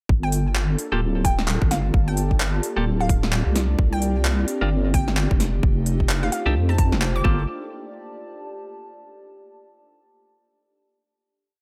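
A deep, up-front wobble bass skips through a soulful, skippy two-step UK garage groove at 130 BPM in G minor, driven by a tight electronic kick and a swung garage kit of cracking snare, crisp hats and handclaps, with sparse, twangy clean electric guitar stabs, glassy pluck phrases carrying the melody through digital delay, a breathy background pad holding chords that move from Gm9 through C9sus4 and F13, and a nostalgic, lo-fi tape-like pad that enters at 1.2 seconds and lingers alone on the final note until 9.3 seconds under light reverb.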